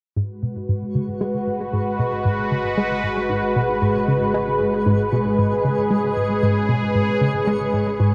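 At 0.2 s a bright, up-front resonant pad opens on a sustained G#m7 chord, its detuned sawtooth tone airy and slowly evolving under a soft attack and long release, while an analog pluck riff sounds below it and a fat analog bass fades in beneath both. This is a hypnotic, expansive ambient passage in G# minor at 115 BPM in a straight 4/4, cut from a longer piece. The pluck is round and detuned with a fast, decaying attack, its riff carried through chorus and delay as a filter sweep moves across the sound. The bass holds a single low G# far back in the mix, thick and sustained, gradually rising out of silence. From 0.9 s a twinkling granular texture fades in, sparkling with an octave-up FM shimmer and lush chorus, and it lingers in the background until the passage ends at 8.1 s. The whole mix is dreamy and soaked in a huge reverb with an 8.2-second tail.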